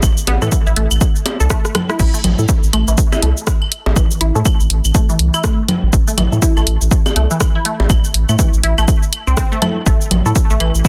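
Minimal techno at 122 BPM in A minor, hypnotic and sparse, with a 16th-note swing. A dry, punchy, overdriven kick and a round, deep analog bass with sidechain pumping sit up front, joined by an overdriven analog drum machine playing cabasa, crash, hi-hat and rim click, plus claves, bongos and congas re-recorded in a large room, with a drum fill at 1.6 seconds. Over this a squelchy, wave-folded blip pluck carries the riff through phaser, chorus and dub echo, while a muted, mellow filtered chord stab on tape-worn chorus and dub echo appears from 0.4 to 6.4 seconds and returns at 9.6 seconds, all in a dry, dense, heavily limited mix cut from a longer piece.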